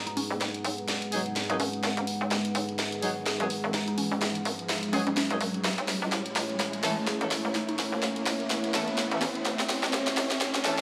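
A swung 4/4 groove at 126 BPM drives this swaggering, aggressive bass house build-up in G# phrygian, with an up-front garage drum kit of cracking snare and filtered hi-hats playing a fill throughout, under a hollow, bouncy FM bass with a punchy, knocking attack and overdrive. A deep, moody analog pad holds sustained chords moving from G#m7 to A at 5.6 s, while a lo-fi, warbling tape-like pad and a woody, round mallet pluck with dub echo sit in the background. From 1.1 s a clear horn section with light vibrato adds low-passed stabs, and an electronic riser joins from 1.3 s, all set in a lush hall reverb.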